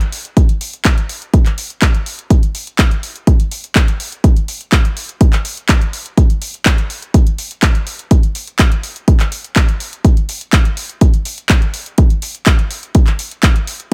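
Set in a digital ambience with a tape-warm small-room grit, this joyful, funky house cut is driven by a punchy electronic kick drum held up front from 0.4 seconds, alongside a layered house drum kit of handclaps and hi-hats, with the hats pumping from sidechain, while very quiet maracas sit low in the mix.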